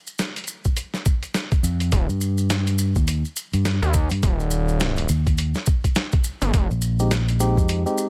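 A swung glitch hop groove at 104 BPM in 4/4 opens with mellow, grainy maracas, a pitched-down, tape-tinged boom bap kit of hi-hat and snare, and a thumpy, compressed electronic kick, giving a funky, gritty feel inside a digital ambience. A punchy fingered electric bass and an aggressive, distorted sawtooth synth bass with oscillator sync and ring modulation arrive around 1.6 s and 1.9 s as the harmony settles on Eb, tuned to A4 = 436 Hz. At 7.0 s a clean tine electric piano adds sidechain-pumped stabs over an Fm9 chord in this short cut from a longer piece.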